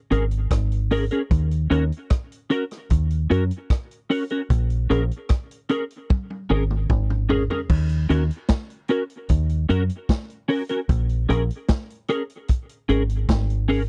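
Meditative and laid-back, this roots reggae excerpt pairs a dark, round, foam-muted deep dub fingered electric bass with a clean, picked electric guitar coloured by ensemble chorus and a vintage drum kit with a punchy kick, carrying 12-bit sampler grit and a rolled-off top, all sitting up front in a dry, close 1970s-style studio sound as Bbm7 and Ebm7 alternate and a drum fill arrives at 6.1 seconds.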